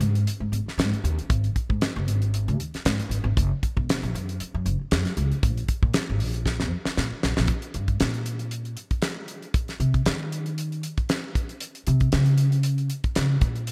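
A 4/4 groove at 116 BPM with a light 16th-note swing drives this slick, nocturnal slice of electric jazz fusion, taken from a longer piece. A damped 70s drum kit of hi-hat, kick and snare sits up front, its fat snare and tight kick dry and acoustic with a rolled-off top, touched by gated reverb. An upright bass, played pizzicato on gut strings, carries the low end from E1 up to Eb3 with a woody, dark, thumpy tone that sits just as close. A drum fill at 6.5 seconds leads into the second section, where the upright bass takes a solo from 7.5 seconds to the close at 13.7 seconds. The overall sound is bright in a 1980s digital manner, with little room reverb.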